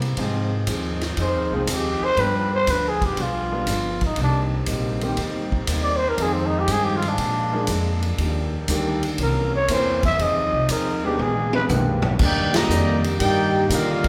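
Dark saxophone chords, a clean hollow-body jazz guitar, woody pizzicato upright bass and a punchy, natural big-band drum kit open this joyful, brassy swing excerpt, joined by a clear concert grand piano at 0.2 seconds and a raspy, growling trumpet solo at 1.2 seconds, before a drum fill hands over at 12.2 seconds to a smooth-topped trumpet section and a background trombone section, all set in a roomy recital-hall reverb.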